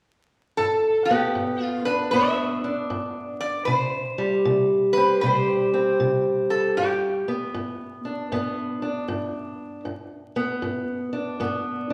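A swung 4/4 pulse at 78 BPM drives this soulful, rollicking acoustic country blues excerpt in G major, where a bright, nasal, metallic resonator slide guitar played with fingerpicks sings the melody up front from 0.6 to 8.3 seconds while a dark, boxy, fingerpicked parlour steel-string acoustic guitar accompanies through to 11.9 seconds over a G, C5, G progression, the duo heard in the wet reverb of a church or concert hall beneath a layer of vinyl crackle.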